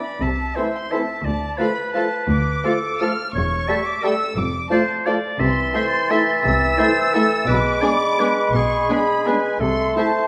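Muted, veiled violins carry the melody over a bright clarinet line from the start of this dark, sweeping classical excerpt in a rubato three-beat lilt, soon joined by bowed cellos and double basses below, then hollow, distant flutes, a softer second violin line, a gentle solo bassoon, background violas and mellow horn chords, all set in a moderate recital-hall reverb.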